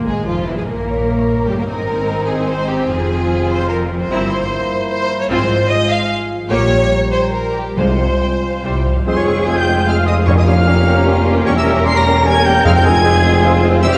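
A stormy, urgent orchestral passage in triple time with a rubato feel opens on an intense, lush violin melody over clear violas, dark horn chords and ringing harp arpeggios, soon joined by an expressive second violin line and rich cellos and double basses, before medium-mallet timpani enter at 7.8 s and, at 9.1 s, an airy flute, a present oboe, a very quiet clarinet, a mellow bassoon and a close-miked tuba fill out this reverberant hall sound, cut from a longer piece.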